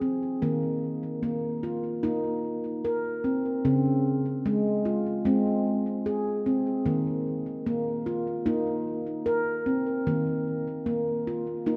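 In a straight, unhurried 4/4, this hypnotic world meditation excerpt features a solo handpan of ringing nitrided steel, struck with the fingertips and set up front, its delay-tinged tones drifting through a wet church reverb as the harmony moves from Eb5 to Db at 3.6 seconds and back to Eb5 at 6.9 seconds.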